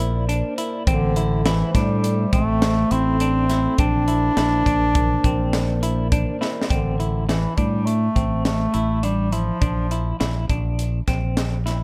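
A smooth-topped bass clarinet carries the melody in a classical style, entering at 0.9 seconds and holding the foreground as a solo voice until 10.5 seconds. This driving, intricate progressive instrumental moves at 103 BPM in a straight 5/4 feel, centred on A phrygian and alternating between Bbadd9 and Am chords. Beneath it, a crisp fusion drum kit with a high-tuned snare, tight kick and hi-hat sits up front in a pumping small room, and plays a fill just before the music shifts into a new section at 6.7 seconds. A bright, fingered electric bass, direct and amped, anchors the low end, while a clean semi-hollow electric guitar plays fingered arpeggios with a tremolo shimmer. A deep, moody analog pad built from detuned square, sawtooth and triangle waves with a sub octave and wave-folding drifts in the background with a slow attack, long release and chorus, dropping out as that second section begins. 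Light reverb and a small-room ambience give the excerpt a dark, warm production.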